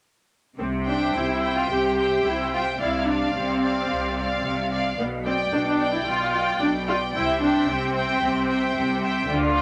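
Set at a quick 110 BPM in 4/4 with a rubato feel, this spirited, graceful classical-period movement for string orchestra in C major is cut from a longer piece. The viola, cello and double bass sections enter together at 0.6 s: the violas carry an up-front, vibrato-rich accompaniment, while the close-sounding cellos and the focused double basses, with their smooth top, hold the bass line beneath. At 0.9 s the symphonic violin section brings in a lush, bowed melody high in its range, joined by a chamber violin section playing an even second line just below it. The harmony moves from C through Dm7 over C and G7 over B before settling back on C, and all five sections continue until 9.6 s. A moderate studio reverb gives the ensemble a gentle sense of space.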